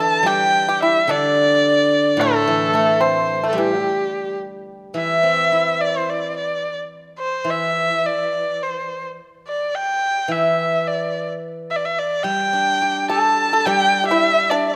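Festive and graceful, this Chinese chamber ensemble piece moves with a flexible rubato feel as a rich, up-front erhu carries the smooth, even melody, bowed with vibrato and sliding portamento. A silvery, ringing steel-string zither, plucked with fingerpicks, accompanies throughout, while a dry, percussive pipa adds a second line until 4.4 seconds and returns at 13.1 seconds. At that point a mellow large bamboo dizi joins very quietly with a pure, straight, tongued tone and a buzzing membrane, all set in a moderate concert hall reverb.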